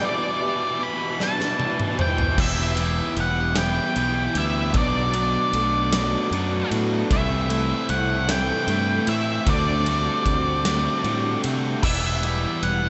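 A dark, fuzz-distorted lead guitar carries a melancholic, cinematic melody in this slow 6/8 post-rock excerpt in E minor at 51 BPM, over bright, double-tracked overdriven guitar riffing, a compressed, twangy twelve-string electric guitar's arpeggios with chorus and delay, and a soft, felt-muted upright piano whose arpeggios, with audible action noise, last only until 2.4 seconds, while a huge arena drum kit with punchy kick and bright cymbals enters at 1.2 seconds with a fill, and a growling overdriven fingered bass joins at 2.4 seconds as the chords move from Em through Bm7, Am/C and D7sus4 back to Em.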